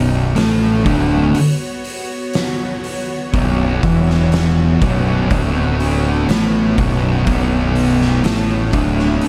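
Ominous and heavy, this slow stoner and doom metal excerpt at 61 BPM in B dorian sits on a single B minor chord, with a thick, double-tracked fuzz guitar riff and a growly, overdriven fingered bass up front from the start, an oversized low-tuned drum kit with a fat snare and punchy kick pumping in a bright stone room from 0.4 seconds, and a tense, detuned, string-like drone with vibrato and its own reverb holding sustained chords in the background from 0.8 seconds, all under a dark production with light reverb.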